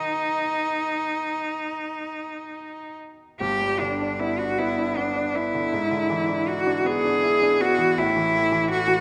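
A clear, intense bowed cello with vibrato sings a serene romantic classical melody up front in a rubato 12/8 at 45-56 BPM (dotted quarters), over a bright, polished concert grand piano with deep bass, moving from B major into G major at 3.4 s and through E7/G# to A5 in a moderate scoring-stage reverb, in this short passage cut from a longer piece.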